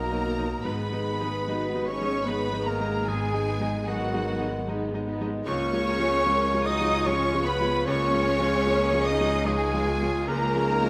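In a rubato 3/4 at 75 BPM, this tender, moving cinematic orchestral cue, cut from a longer piece, sets a lush, vibrato-rich violin section on the melody over background lines from a second, clearer violin section, an airy, hollow flute, a close-miked clarinet, a smooth oboe, a bright, short-sustained grand piano, an even viola section, a distant, mellow French horn section holding chords and an intense cello section, with a bright bowed double bass section underneath, all within a moderate scoring-stage reverb as the harmony moves from B through G#m to C#.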